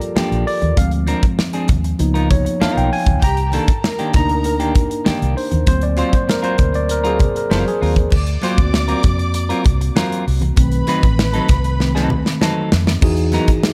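A short excerpt of lush 1970s-style soul at 98 BPM in a silky, cinematic mood opens with an up-front tine electric piano taking the solo through a combo amp over a twangy picked clean guitar riff, a polished drum kit with bright cymbals and a tight kick, a round, foam-muted fingered bass and very quiet thick-skinned congas, while a bowed sul tasto string section enters at 3.2 s, the harmony moves through rich chords from Gm7 to Emaj9, and a drum fill at 11.8 s closes out the dark, small-room production.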